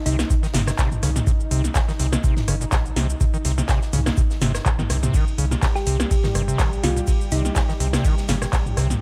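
Hypnotic and driving, this acid house excerpt at 124 BPM in C phrygian rides a deep, up-front electronic kick and a punchy analog drum machine with metallic hats, handclaps, cabasa, ride, rim clicks and toms, backed by an acoustic snare and shaker set in the background, while a squelchy, resonant overdriven acid bass riff with a filter sweep churns over a round, dark analog bass and a lush, detuned unison pad that pumps with the sidechain, and a mellow, tine-like thumb-piano-style synth pluck carrying vintage 12-bit grit and tape echo returns at 5.8 seconds, all in a dry mix.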